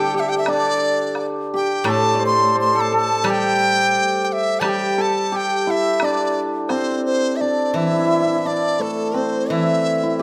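A moderate recital-hall reverb gives this short cut from a longer Chinese traditional chamber piece an open, resonant setting. At a steady 86 BPM in 2/4 with a straight feel, in the D shang mode, the music sounds pastoral and festive. The bamboo dizi carries the melody up front, its hollow, airy tone edged by a buzzing membrane, a crisp attack and lifted highs. Beneath it the hammered dulcimer plays a second line, also close, with a shimmering, ringing quality. Lower down the steel-string zither, played with fingerpicks, supplies a silvery accompaniment, while a close, dry woodblock sits in the background from 0.5 to 6.9 s. A new section begins at 7.4 s and carries the ensemble to the end of the cut.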